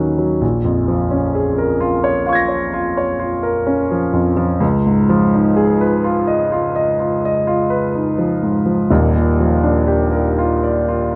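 A concert grand piano plays alone in this hazy, mysterious impressionist classical fragment, unfolding in a slow, rubato 9/8 at roughly 39-44 dotted-quarter beats per minute. Its deep bass and long sustain carry a harmony that drifts from Bbm7 to Db9 at 4.6 seconds and settles on Ebmaj9 at 8.9 seconds, with the range stretching from D#1 up to Bb6. Close, detailed miking places the instrument up front within a light reverb, and the 11.2-second passage is cut from a longer piece.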